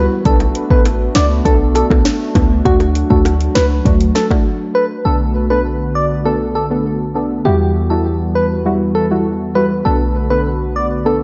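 A dreamy, reverb-soaked haze with a lush hall and a dark, rolled-off top frames this bouncy, hypnotic dancehall excerpt in B minor at 100 BPM, moving from Bm7 and D into Emadd9 before returning to Bm7. A round, keys-like FM synth lead carries the melody up front with chorus, vibrato and a diffuse ambient delay, over detuned, filter-plucked chord stabs, a hollow, flute-like pad that pumps against the sidechain, and a clean, boomy sine 808-style bass. An electronic afro-pop kit with a deep kick, sharp snare and metallic hats, backed by tight, high-tuned bongos in the background, drives the opening until 4.4 s, and a short break at 4.5 s leaves the synths and bass to carry the rest.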